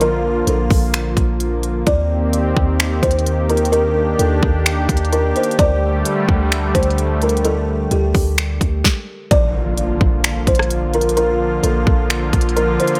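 This excerpt rides a half-time trap pulse at 129 BPM in 4/4, an atmospheric cloud-rap piece in B-flat major with a dreamy, blissful mood. An electronic trap kit sits up front with a hard-clipped kick, a sharp snare, crisp hi-hats, finger snaps and rim clicks, while a deep, boomy 808-style bass with a sine core, a noise layer and a fast, decaying attack anchors the low end. A smooth, warbling analog pad built from detuned sawtooth tones holds sustained chords with a slow attack, its vintage colour thickened by chorus and pulled into a sidechain pump. Above it, a buzzing kalimba plays the melody in soft, woody, fingertip-plucked notes with a hollow-box mellowness, trailed by tape echo. The harmony moves from Bbmaj7 through Eb6 and Dsus4, returning to Bbmaj7 at 9.3 seconds, where a very quiet electronic impact marks the start of a new section, all set in light reverb and digital ambience.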